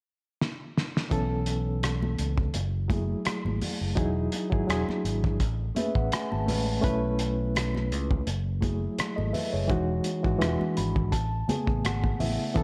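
A lightly swung 84 BPM groove in 4/4 opens with a short drum fill at 0.4 seconds from a muffled, cloth-damped kit with a fat snare and tight kick, before fingered electric bass, bright high-tuned congas kept very quiet, and a reedy, lightly overdriven electric piano with fast tremolo join at 1.1 seconds to carry this smooth, cinematic slice of lush 1970s-style soul through jazz chords like B9sus4, F#m9 and Amaj9, the growly bass anchoring the low end while the up-front piano adds fills at 5.4 and 10.4 seconds, all wrapped in a dark production with light studio reverb.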